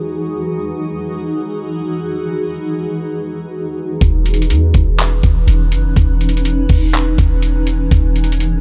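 A granular cloud pad opens this floating, dreamy cloud-rap excerpt, holding sustained chords with a blurred, detuned, evolving texture, its own built-in reverb and sidechain pumping. The piece sits in E lydian at 123 BPM in 4/4 with a half-time feel, and the harmony moves from Emaj9 to C#m7/E at 4.0 seconds, then to A#m7b5/E near the end. At 4.0 seconds a clean 808-style bass enters with deep, boomy sine tones that strike fast and then decay. A lo-fi sampler-style drum kit arrives at the same moment, pitched down and muffled, with a thumpy kick, hi-hat and handclaps carrying a tape-warm, compressed character. The overall production is dark and dry, and the bass, drums and mellow pad all sit up front in the mix.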